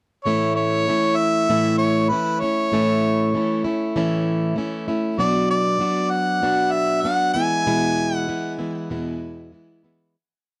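Open-road and warm, this short rock piece moves at 97 BPM in A major, with an up-front harmonica carrying a smooth-topped, pop-style melody of song-like motifs, touched with tape echo, from 0.2 seconds. Beneath it, a picked, plugged-in steel-string acoustic guitar with a boxy parlour tone and audible finger squeak plays folk strumming in open chord shapes through A, Bm and E. Light reverb and a dark, warm production frame the single verse before a fade-out beginning at 7.7 seconds.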